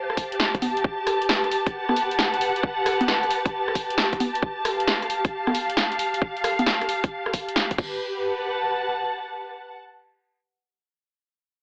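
A lush, dark string section, bowed sul tasto with vibrato and a woody tone, opens this sunny, soulful two-step UK garage cut and pumps against the beat throughout. A tight, layered electronic kick and a punchy analog drum machine with congas, crash, hi-hat, rim click and a punchy snare swing up front with tape-like warmth, while a short, sine-based 808-style bass with a noisy edge sits in the background. The drums stop at 7.9 s, and after a final bass hit that fades by 8.0 s, the strings carry on until 9.8 s, all heard through a moderate studio reverb and a thin AM-radio filter.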